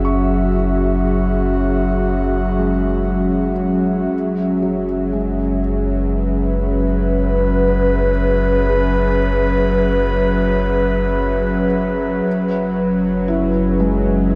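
An airy, breathy pad holds sustained chords over a round sub bass from the first moment, while a felt-muted upright piano fades in through the whole 14.4 seconds with soft arpeggios sent through delay, sitting in the background of this serene ambient passage at 59 BPM. At 0.7 seconds a very quiet, string-like drone with a tense, ring-modulated edge and vibrato joins on a single low note. The chorused pad and deep bass sit up front over a C#m7/F# harmony, all wrapped in a huge, dark reverb that gives this fragment of a longer piece a spacious, hushed glow.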